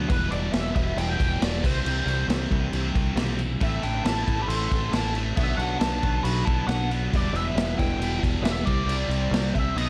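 A straight 4/4 pulse at 136 BPM drives this brooding, gritty classic rock excerpt in E minor, with an up-front vintage kit of punchy kick, medium-tuned snare and dark crash cymbal anchoring a round, direct fingered bass. Two picked rhythm guitars carry the riff through Em, C, Am and Bm changes: one tight, bright and distorted, the other an overdriven semi-hollow guitar with a hollow-body tone and phaser, set in the background. A fuzz lead guitar plays the melody through wah, distortion and slapback echo, and from 3.6 s a biting overdriven second lead joins in the background, with light reverb around the mix.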